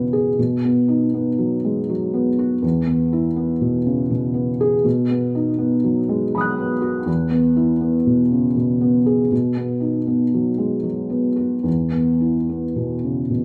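Neoclassical minimalist piano in B major, hopeful and tender, moving at 80 BPM in a rubato 3/4 and tuned slightly low at A4 = 438 Hz. A felt-muted upright piano plays alone throughout, its soft, boxy, intimate tone sitting up front and ranging from E2 to F#6 as the harmony alternates between B and E5. A wet large studio reverb with a 1.3-second decay surrounds the piano in this short section cut from a longer piece.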